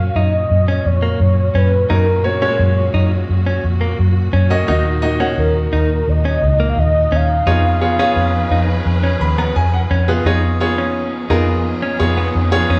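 Recorded as a band playing live in one room with moderate large studio reverb, this driving, earnest piano-driven pop at 86 BPM in 4/4 puts a bright, woody upright piano up front, with a fill from 8.9 to 10.3 seconds, over a dark, round, foam-muted fingered bass, a scooped, compressed clean electric guitar riff recorded direct, and a bowed studio string section sitting further back with vibrato and portamento, while a velvety, detuned sawtooth synth lead with chorus carries the melody until 9.6 seconds over chords moving from Gb to Ebm to Db7/F.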